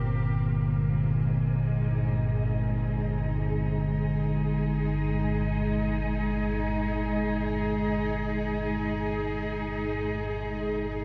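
A deep, rumbling drone, a muted cello section and a breathy, wind-like tuned noise texture all sound from the start of this 11-second excerpt of ominous, unsettling dark ambient music in free time, tuned to A4 = 445 Hz. The detuned, wave-folded drone sits up front in the low register with its own reverb, while the veiled, con sordino cellos fade in over the full 11 seconds with light vibrato, holding sustained chords that move from Gm to Ebadd11/G. The airy noise layer occupies a higher register, and the whole piece sits in a wet cathedral reverb with a 5.8-second decay.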